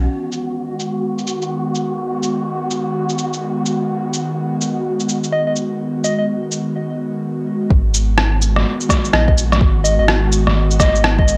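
A swung sixteenth-note groove at 126 BPM in 4/4 sets up this rainy, melancholic future garage excerpt in G# minor, built around a G#m7 chord. Sampler-style electronic shaker, cabasa and rim click enter at 0.3 seconds, sitting up front but muffled, compressed and pitched down through low-pass filtering and a large-room sheen. Beneath them, an airy, breathy pad holds sustained chords with a detuned, full-bodied character, chorus and sidechain pumping, while a dark, wind-like tuned noise texture hovers faintly on F#4 in its own reverb. A soft struck FM synth lead carries the melody on D#5 in two phrases, from 5.3 to 6.2 seconds and again from 9.1 seconds, its round, keys-like tone warbling with vintage vibrato, chorus and analog delay. After a short break, a soft, tape-tinged electronic kick drum and a deep, round sine sub bass with tube saturation and pumping arrive together at 7.7 seconds. 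The whole piece has a dry, gritty cassette-tape quality with light reverb.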